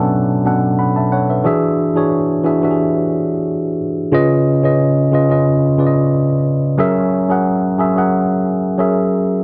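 R&B excerpt at 90 BPM in 4/4, with a light sixteenth-note swing and an introspective, sultry mood. A lone tine electric piano carries the whole 9.4 seconds, its worn, slightly out-of-tune tone sitting up front through a combo amp and colored by a phaser. The part spans B2 to B5, moving through Bm11, E9, C#9 and F#9 chords that give the passage its sultry color. A moderate echo chamber reverb with a 2.7-second tail surrounds the piano, lending the clean sound a roomy glow. The tuning sits slightly sharp at A4 = 441 Hz, adding to the instrument's lived-in character.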